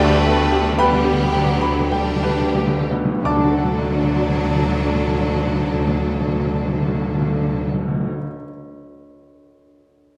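The recording sits in a reverberant recital hall that lends the short fragment a lush, passionate glow. This romantic movement for piano and orchestra is in D major and 3/4, moving at a slow, rubato 44-63 BPM and easing further over the opening 3.2 seconds while the timpani, struck with soft mallets for a round, up-front tone, plays a fill. A clear, intimate grand piano carries the melody across a span from D2 to D6, its action noise audible, while a focused, distant violin section shares the melody above a smooth, close second violin line. Vibrato-rich violas and cellos sit in the background, the double basses add a focused bottom with a smooth top, and a very quiet tuba joins the bass. The harmony moves from G/D to D at 3.2 seconds, the strings and tuba stop at 7.7 seconds, and the piano continues until 10.2 seconds.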